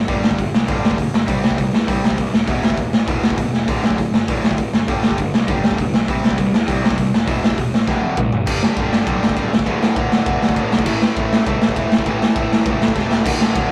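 A driving, straight 4/4 punk beat pushes this upbeat, energetic fragment of a longer piece forward at a fast clip, with the raw garage drum kit sitting up front in the mix. The acoustic kit sounds saturated and gritty, with a boomy kick, a medium-tuned snare, dark cymbals and a rolled-off top, all breathing in a small, pumping room as crash, ride, hi-hat and toms fill out the groove. Beneath it, a fuzz-drenched picked electric bass growls with a punchy, overdriven edge from the very start. Two bright, overdriven electric guitars, one distorted and one raw garage tone, each play picked riffs in the background through power-chord changes built around G5, C, E5 and D5. The drums mark the turns with fills, the longest leading at 8.5 seconds into a second section where the chords move through G5, D5 and A5. The whole recording has a rough rehearsal-room feel with light reverb.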